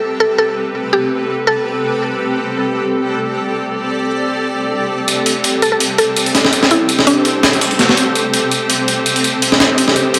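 A blurred, cloudy granular pad opens this dark, nostalgic drum and bass fragment in A minor, holding a sustained Am9 chord with its own built-in reverb for the full 10.2 seconds. At 0.2 seconds a woody, round mallet-like synth pluck carries a short melody through chorus, vintage 12-bit sampler grit and dub echo, then stops at 2.0 seconds before returning from 5.6 to 7.6 seconds. At 5.1 seconds a compressed, pitched-up breakbeat kit arrives up front, its hi-hat and high-tuned snare sounding gritty and re-recorded in a large room. The tempo sits at 166 BPM in 4/4 with a light 16th-note swing, giving the jungle break its lean. A lush hall reverb and a bed of vinyl crackle frame this passage, cut from a longer piece.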